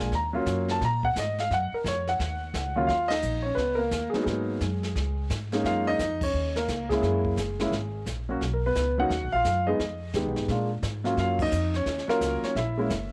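A concert grand piano carries the melody from the first moment, featured in a solo passage over the opening 2.9 seconds of this moody, late-night jazz piano trio excerpt in Eb minor. It runs at a brisk 174 BPM in 4/4 with a swung eighth-note feel. The piano sounds warm, natural and up front, with a deep low end. It is joined throughout by a woody, thumpy pizzicato upright bass with steel strings and by a brushed drum kit with dark cymbals, a medium-tuned snare and a boomy kick, heard in a small room. From 2.9 seconds the tune moves into a new section, and the trio hits shared accents starting at 3.1 seconds. The harmony travels through rich minor-ninth, suspended and half-diminished colors such as Ebm9, Abm9, Gb7, Fm7b5 and Bb7 before it returns to Ebm9, all under a light reverb.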